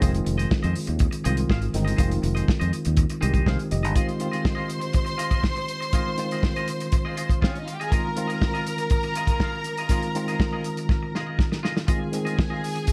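A light reverb gives this disco recording a snug, intimate sound, with a muffled, lo-fi drum kit sitting up front under a sultry, driving groove in a straight four-beat feel. A worn, slightly out-of-tune tine electric piano plays accompaniment through its built-in speakers, lightly overdriven, while a clean, picked electric guitar adds compressed, twangy accompaniment higher up. A growly, punchy fingered electric bass holds the low end up front before dropping out at 3.9 seconds. At 4.0 seconds a rich studio string section enters as a second line, bowed with light vibrato and a smooth, even ensemble tone. The dry kit, with its tight kick and rolled-off top, marks a drum fill at 10.9 seconds, and the passage, which opens on an F minor seventh chord, carries on until this excerpt cuts off.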